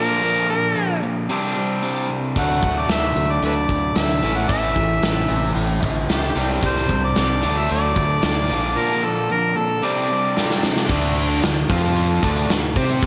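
A straight 4/4 groove at 112 BPM drives this swaggering, confident classic rock excerpt, where a gritty, amplified harmonica with light vibrato and tongue slaps leads up front over two bright, crunchy picked guitar riffs with slapback echo; a growling, overdriven fingered bass and a punchy acoustic drum kit with a medium-tuned snare join at 2.4 s, a dark octave-fuzz lead guitar adds a brief second line, and after a drum fill a grainy, very quiet tube shaker enters at 10.9 s, the whole mix sitting in a lush hall reverb with a big arena sound.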